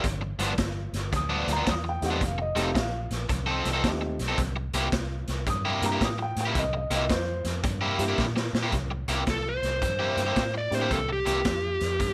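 Gritty and soulful, this electric blues shuffle excerpt opens with a bright, overdriven semi-hollow guitar riff over a round, foam-muted bass and a raw garage drum kit with a punchy kick and saturated, pumping small-room sound. A dark, woody upright piano with audible action noise and long sustain enters at 1.2 seconds, and after a drum fill a smooth overdriven lead guitar takes the melody from 9.3 seconds. The mix sits in light reverb.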